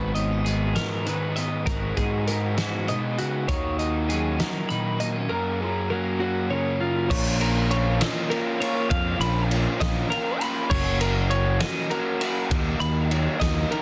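Math rock and midwest emo in a lilting 6/8, this wistful, intricate fragment pairs two bright, twangy twelve-string electric guitars: one picks accompaniment through a lush chorus until 8.9 s, while the other spins high, clean arpeggios throughout. Beneath them, a lo-fi, double-tracked garage guitar drives an overdriven riff, and a growly fuzz bass sits up front, just above the rest. A loose indie drum kit with a fat snare, punchy kick and rolled-off cymbals enters at 0.2 s, all set in light reverb within a dense, heavily limited modern master.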